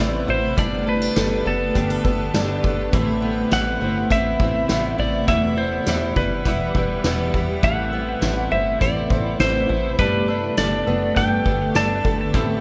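A clean lap steel guitar with delay carries a melancholic, haunting slide melody from A4 to A5 over a dream pop bed at 102 BPM in A minor, where a shimmering, octave-doubled fingerpicked twelve-string acoustic guitar spins arpeggios, a clean electric guitar with harmonic tremolo and analog chorus plays accompaniment, a cloudy, evolving granular pad holds chords in the background, a plucky analog bass punches low beneath, and a distant soft-mallet drum kit with gated reverb enters at 0.6 seconds, all moving through Amadd9, Gadd9 and Em in a bright 1980s-style digital production with moderate plate reverb, cut from a longer piece.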